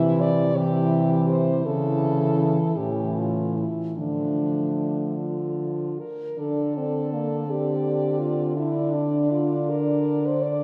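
A slow, rubato 6/8 lilt moves in dotted-quarter beats of about 48 to 58 BPM, giving this solemn, yearning classical piece for horn quartet in D minor an unhurried, breathing pulse. Four French horns play together throughout the 10.6 seconds, cut from a longer work. The melody horn sits on top with a warm tone, light vibrato and a punchy, present attack. Beneath it, a second line sounds mellow, distant and roomy, while an accompanying horn adds a smooth-topped inner voice. The bass horn is close-miked and up front, with a soft attack and its own gentle vibrato. The harmony moves from C through A/C# and A to D minor, and the phrase begins again at 6.4 seconds on a bare D5, all bathed in a wet, lingering church reverb.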